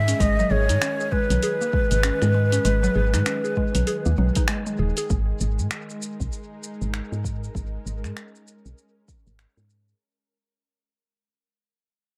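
Organic downtempo at 98 BPM in G# minor, meditative and earthy, with a gentle 16th-note swing, cut from a longer piece. A breathy, reedy ney carries the melody up front with vibrato and analog delay, singing only through the first 4.5 seconds, while a mallet-like synth pluck spins mellow, chorused arpeggios with delay until 5.1 seconds. Underneath, a tense, nasal bowed-like drone holds sustained chords with vibrato, its own reverb and sidechain pumping, and a round, woody FM bass sits forward in the mix, dark and decaying. A tape-colored deep house kit of finger snaps, hi-hat and shaker is joined moments later by a deep electronic kick, both re-recorded in a small room. At 5.1 seconds the harmony shifts from G#m to G#5 as the bass gets a filter sweep and the piece fades out, leaving an echo-heavy, lightly reverberant space.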